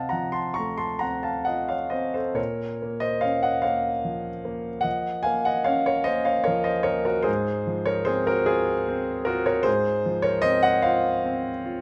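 In a slow, rubato 12/8 that moves at 44-52 dotted-quarter beats per minute, this melancholic, mournful romantic nocturne in Bb minor is carried by a solo concert grand piano, cut from a longer piece and lasting 11.8 seconds. The piano sounds intimate and natural, sitting up front with deep bass, audible action noise and a range from Ab2 to Db6, as the harmony moves from F to Bbm at 2.4 seconds and to Fm/Ab at 7.3 seconds. Close, detailed microphones capture the instrument inside a moderate recital-hall reverb of 1.8 seconds.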